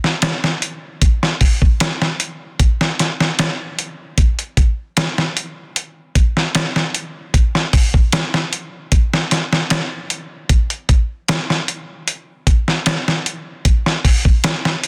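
A dense, heavily limited mix with light reverb and digital ambience frames this hypnotic, dark trip hop fragment at 76 BPM in straight 4/4, where a gritty, compressed, sampler-style dusty soul drum kit sits up front for the full 14.9 seconds, its thumpy kick, fat snare and hi-hat carrying the groove alone.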